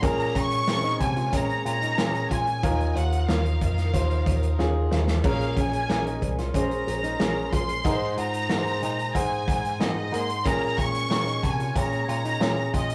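A rich, up-front violin section carries the earnest, dramatic melody of this piano-driven pop piece in Bb minor at 92 BPM, over a clear concert grand piano, a bell-like tine electric piano holding the bass, a dark fingerpicked steel-string acoustic guitar riff, soft sul tasto strings sustaining chords in the background, and a punchy natural drum kit with a fill at 4.6 seconds, all set in a rough rehearsal-room sound with moderate reverb and saturation.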